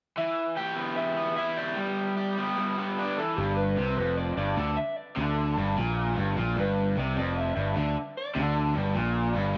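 Rock in G mixolydian at 150 BPM, carefree and upbeat, this short clip from a longer piece opens with a bright, overdriven garage guitar riff, double-tracked and up front, beneath a dark, slightly broken-up melody from an electric guitar through a small old amp, lo-fi and trailed by tape echo. At 3.4 seconds, after a brief break in the chords, a growling fingered electric bass joins with its own overdrive, direct and amped, pushing the second section forward. Light reverb and a dull top end give the whole thing a rough, homemade edge.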